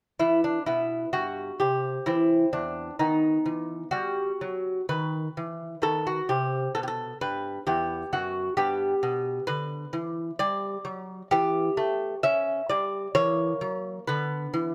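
A solo lute begins at 0.2 s, fingerpicked on gut strings in a classical, baroque-style dance in 3/4, set in E minor and tuned to A4 = 441 Hz. The mood is grave yet flowing, with a rubato feel around 65 BPM that lets the phrases breathe. The double strings, some doubled at the octave, give the delicate tone a gentle shimmer across a range from E2 to E5. The harmony moves from Em through Cadd9/E and B/D# to B, returns to Em and Em/G, then darkens through C#m7b5/E and F#7/E before the passage breaks off on Bm/D at 14.7 s, cut from a longer piece. Close, detailed microphones keep the instrument up front, with a light reverb around it.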